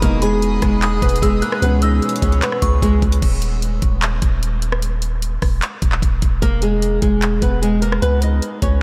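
Soaked in cathedral reverb, this dreamy, brooding trap passage moves with a half-time feel, with an up-front, fingerpicked flamenco guitar carrying the melody through subtle chorus and delay. A dark, boxy grand piano, earthy bowed chamber strings and a glassy FM synth bell sit in the background over Emaj7 and Dbm7, and all are gone by 3.2 seconds. That leaves a menacing break where only the deep, sine-toned 808 bass and the trap kit, with its knocking kick, bright hats, handclaps, rim clicks and crash, carry on until the guitar returns at 6.4 seconds.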